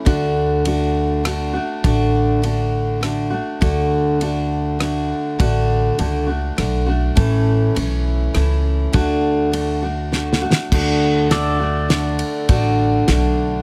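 Close, detailed and nearly reverb-free, this sunny, heartfelt honky-tonk and classic country piece in 3/4 and D major at 101 BPM sets an up-front, full-bodied picked dreadnought acoustic guitar over a woody, thumpy pizzicato upright bass and a dry, damped 70s drum kit with a fat snare and tight kick, whose fill at 10.1 s leads into a brief passage where a bright, clean pedal steel guitar enters at 11.3 s with compressed, slide-played sustained chords and volume swells before the recording cuts off.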